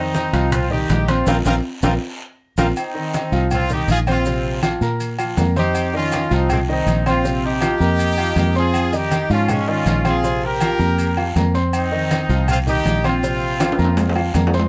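Passionate and danceable, this salsa excerpt moves at 160 BPM in a straight 4/4, cut from a longer piece. A bright, tight horn section carries the melody up front with a light vibrato, while a grand piano with a present, polished tone and long sustain fills in the accompaniment. Below them, a fingered electric bass sits up front with a dark, round, foam-muted sound. The percussion is built from ringing metal-shell timbales and agogo bells, damped, low-tuned congas with a thick-skinned, soft-handed feel, grainy maracas and a raspy guiro, the last three tucked into the background. The harmony moves among F5, Bbsus2 and Fm7, with a band accent and drum fill from 1.3 to 2.8 seconds and another fill closing out at 13.6 seconds. Close, detailed microphones and a light reverb keep the sound intimate and clear.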